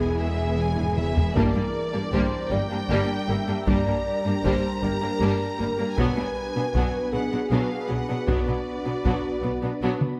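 A slow 6/8 pulse at 52 BPM, driven by a close, dry taiko ensemble struck with hard sticks that enters with a fill at 0.8 seconds, anchors this relentless, brooding cinematic cue, a passage from a longer hybrid orchestral and electronic film score moving from E to Gm to Bm. A distant, intense violin section carries the melody alongside a velvety, detuned synth lead with chorus, digital delay and portamento, while a softer violin section sings an expressive second line in the background. An intense viola section, a rich cello section and a clear double bass section fill the accompaniment and low end beneath a glassy, ethereal FM pad of slow-blooming sustained chords, all in a lightly reverberant, detailed close-miked sound.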